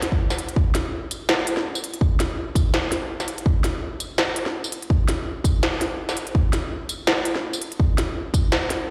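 A heavy, tape-warm electronic kick drum sits up front from 0.1 to 8.4 seconds, driving this cinematic drum and bass fragment at 166 BPM in 4/4 with a half-time feel and a light 16th-note swing. An industrial electronic drum kit runs throughout, with a clanging snare, crisp hi-hats and tambourine. Both parts are played back through a big sound system in a bare room and bathed in a lush hall reverb, giving the brief clip, cut from a longer piece, a vast, heavy weight.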